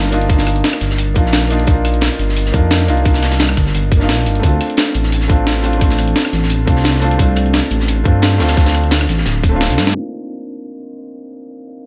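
Up front, a deep, rumbling detuned saw bass with a saturated, beating tone anchors this dreamy, lush liquid drum and bass excerpt, sustaining under the chords from the start until 9.9 seconds. A soft, felt-muted upright piano plays mellow accompaniment throughout, its intimate sound carrying audible action noise and softened further by a low-pass filter and digital delay. The drums layer a tight, electronic kick re-recorded in a small room with a gritty, compressed sampler-style breakbeat kit of hi-hat, rim click and high-tuned snare, while a second, darker breakbeat kit with a saturated, rolled-off top sits in the background. The harmony moves from Cm11 to Dm7 and back, all wrapped in a small room reverb. A drum fill at 9.8 seconds and a band accent at 9.9 seconds close the opening passage, after which the bass and second kit drop away. That leaves the sampler-style kit and the piano, whose filter sweep carries it to the cut at 11.9 seconds.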